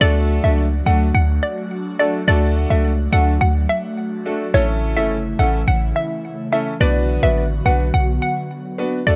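Bouncy and sunny, this short dancehall clip, cut from a longer piece, moves in a straight four-beat feel over a chord progression of D, A and B minor. A hollow, detuned square-wave pluck carries the melody in a high register from start to finish, its chorus giving the mellow tone a gentle shimmer. Underneath, a clear grand piano plays the accompaniment with an intimate, polished presence, its long sustain and audible action noise bringing a close, acoustic touch. An airy, breathy pad holds soft sustained chords further back, colored by chorus and phaser. Up front, a deep, boomy 808-style bass with a clean sine tone anchors the low end, and the whole track sits in a digital ambience with the worn, warbly pitch drift of old cassette tape.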